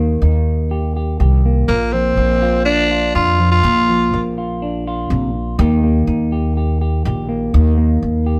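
A straight 4/4 pulse at 123 BPM drives this carefree highlife guitar band passage in Bb major, cut from a longer piece. An upright bass with gut strings is plucked pizzicato up front, giving a woody, thumpy low end throughout, while a clean, fingered semi-hollow electric guitar supplies hollow-body accompaniment, sitting lower in the balance. At 1.7 s a growling tenor saxophone steps forward as the solo voice in a pop style, its raspy, gritty tone carrying vibrato and a smooth top, and it drops out at 4.2 s. The harmony moves from Eb to Bb and back to Eb at 5.6 s. The band plays live in one room, and a moderate studio reverb lends the sound a relaxed, warm glow.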